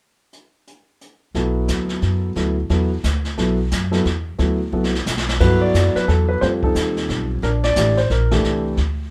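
A brushed drum kit opens alone at 0.3 s, sounding distant and roomy with dark cymbals and a boomy kick, before a woody, pizzicato upright bass and an intimate, up-front grand piano join at about 1.3 s in this relaxed jazz piano trio excerpt in G major. The trio swings in 3/4 at a brisk 178 BPM, the piano's natural tone carrying deep bass, long sustain and audible action noise as the harmony moves through chords such as Bm7, D69, Gmaj7 and Bbmaj7. A drum fill at 4.7 s leads into the closing passage, all set in light reverb with a warm, easygoing mood.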